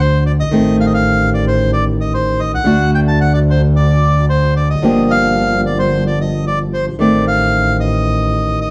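Heard through a wet studio reverb in a single shared room, this passionate, sultry tango fragment moves at 112 BPM in a rubato 4/4, where a reedy, dark, airy bandoneon carries the melody up front over a fingerpicked flamenco guitar with warm fresh strings and a warm bowed double bass that sings with vibrato and portamento, as the harmony drifts through Adim, D and Gm7.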